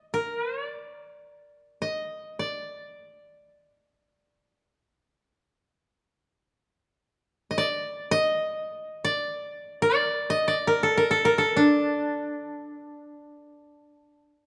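A solo koto, played with fingerpicks, carries this short passage of Japanese traditional chamber music, its tone bright and woody as it sits up front in the sound. The mood is calm and austere, and the music moves in free time, unbound by a steady pulse. The koto stays within a compact span from D4 to Eb5, and its dry attack is set against the moderate reverb of a recital hall, which lends a gentle halo to each note. Toward the close, from 10.6 seconds onward, the playing slows down. The koto falls silent at 14.3 seconds, and the passage, cut from a longer piece, ends shortly after.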